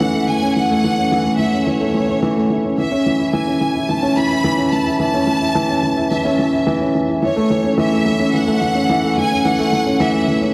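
A dark, mellow baby grand piano riff with audible action noise and a lush, vibrato-rich violin section melody open this short, melancholic and hypnotic electronica cut at 108 BPM in F# minor, tuned to A4 = 438 Hz, with both parts touched by tape echo and bathed in a huge ambient reverb as the harmony moves from F#m7 to A and back to F#m7 by 7.2 seconds.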